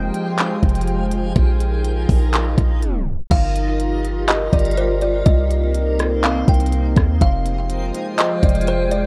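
A half-time trap beat in 4/4 sets a slow, floating pulse under this short cut from an ethereal, spacious cloud-rap track. The electronic kit sits up front with a knocking kick, crisp hi-hats, handclaps, rim clicks and a crash, its sound re-recorded in a small room, while a deep, boomy 808-style bass with a fast, decaying sine attack anchors the low end. Behind them, a nostalgic lo-fi pad of detuned sawtooth and triangle tones holds sustained chords through chorus, reverb and a phaser, breathing with sidechain pumping. A reversed, granular texture adds bright, dreamy swells with a long release. Around 2.8 seconds the whole mix slumps through a tape stop, and at 3.3 seconds a woody, hollow-bodied kalimba enters with a ringing thumb-plucked melody trailed by digital delay, as the chords move from Gm7 to Cm7 and back to Fmadd9. Over the entire recording lies the worn warble of old cassette tape, its pitch drifting gently in a dry, close sound.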